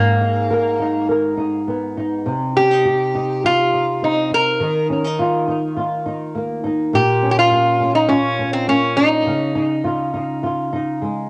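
A lap resonator guitar and a flamenco guitar begin together, opening an easy-going, sunny pop passage in a steady, straight 4/4, cut from a longer piece. Up front, the resonator carries the melody with a bright, metallic, nasal slide voice played with fingerpicks, colored by plate reverb and an analog delay. The double-tracked flamenco guitar, also up front, supplies dark, thumb-plucked accompaniment in the flamenco style, moving through Abmadd9, Cm, Ebsus2, Bbm and Dbadd9. Both guitars carry a cassette tape character, and the whole has the intimate feel of a home recording with moderate room reverb. The resonator drops out at 11.0 seconds, leaving the flamenco guitar to ring on alone until 11.3 seconds.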